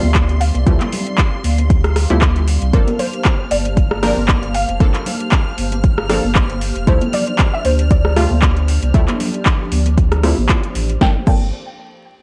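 Late-night and moody, this deep house cut at 116 BPM in G minor moves between Dm11 and Gm11 as an overdriven, up-front electronic kick and a deep house drum kit of punchy snare, metallic hats, rim click, handclaps and crash drive beneath a round sine sub bass, muted detuned dub chord stabs with tape echo, a dark, soft pluck melody, a hollow flute-like pad and shimmering string-machine violins pumping in the background, and distant high-tuned congas, set in a gritty, dry hardware sound with vinyl crackle.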